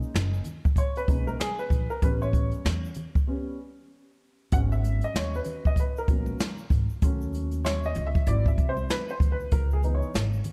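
Brushed drums sit up front in this mellow, cool jazz-hop excerpt, cut from a longer piece. The airy, polished kit has a medium-tuned snare, a boomy kick and hi-hat, and it moves at 96 BPM in 4/4 with a 60% swing on the sixteenths. A worn, slightly detuned upright piano with a subtle chorus plays a solo in G# minor, with a break from 3.3 to 4.5 seconds, over chords that run from Bmaj13 and A9 through G#m11, D#m7b5 and G#aug7 to C#m9. Underneath, a pizzicato upright bass with steel strings gives a woody, thumpy low end. A tube shaker and hard-handed congas sit in the background with a live-room feel. Light reverb and small-room ambience give the whole a cozy small-room setting.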